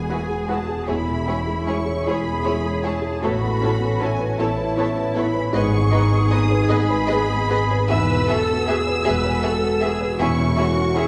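A lush, vibrato-laden violin section carries the melody high above the ensemble in this bittersweet, longing cinematic passage, cut from a longer piece and moving in a rubato 6/8 at about 52 BPM in E major. Beneath it, a soft, felt-muted upright piano gives a mellow, intimate accompaniment, while a bright concert harp rings out thumb-plucked arpeggios from the background. A second violin line, smooth-topped and expressive with a soft attack, sits further back, and a very quiet viola section adds gentle portamento to the inner harmony. The low end rests on a rich, close cello section with light vibrato and a smooth, even double bass section that holds the deepest register. The harmony drifts through Eadd9, C#m/E, Aadd9 and G#m before returning to Eadd9 and C#m/E, and the whole passage is heard from further back in a wet scoring-stage reverb with a 1.5-second decay.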